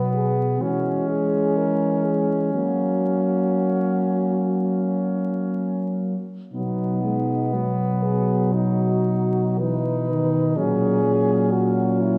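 A close-miked French horn with a warm, vibrato-touched tone carries the melody in this serene, tender classical passage for horn quartet, cut from a longer piece and moving in a rubato 4/4 at 54-64 BPM in B major. A clear-toned horn sings a second line up front, while two dark, smooth-topped horns supply the accompaniment and the bass beneath gently shifting harmonies that settle on B before turning toward F#/A#. All four play throughout, and a wet concert-hall reverb and vinyl crackle surround the ensemble.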